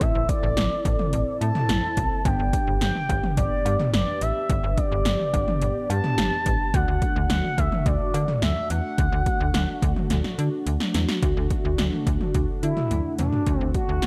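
A straight 4/4 pulse at 107 BPM drives this cool, propulsive synth-pop excerpt, carried by up-front 80s electronic drums with a punchy kick, gated snare and toms, metallic hi-hats, a cowbell and an overdriven edge. Beneath them, a slap-like FM bass adds snappy, fast-attack notes that decay. A mellow synth brass fills the middle with round, detuned sawtooth chords that evolve through a filter sweep, soft attack, vibrato, chorus and phaser. On top, a smooth, expressive lead sits up front, its dark sawtooth-and-triangle tone shaped by a moving notch, chorus and delay as it sings over changes from Am to Gadd9 to D. Drum fills arrive at 10.1 and 12.9 seconds, framing a new section that begins at 11.2 seconds, all set in light reverb and digital ambience.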